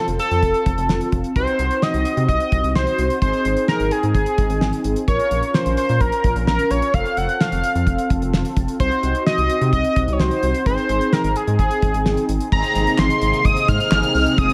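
A bold, octave-doubled sawtooth lead opens this cool, driving synth-pop passage up front, its detuned tone carrying chorus, vibrato and tape echo, with mellow synth brass beneath it, round and dark, colored by chorus and a phaser. A moment later a rubbery square-wave bass enters with a bouncy, hollow pluck, alongside a damped 70s drum kit whose fat snare, tight kick, handclaps, hi-hat and crash sit dry and smooth under gated reverb. The harmony cycles through a shadowy diminished chord on a straight, steady pulse, giving the groove a restless edge. At 12.5 seconds a phased string machine arrives with swirling, warbling sustained chords under ensemble chorus as the music shifts to an added-ninth chord. The mix sits in a small room with light reverb, and the clip is cut from a longer piece.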